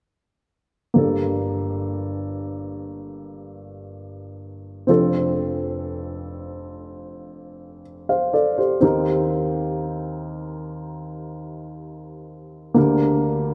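A dark, woody upright piano sets up a melancholic, longing pop accompaniment at 0.9 s, mellow and up front as it moves slowly through Gmadd9, F6, Cm7/Eb and Gm/D in straight 4/4. A moderate, lush hall reverb surrounds the piano, lending this short cut from a longer piece a spacious, wistful air until it ends at 13.5 s.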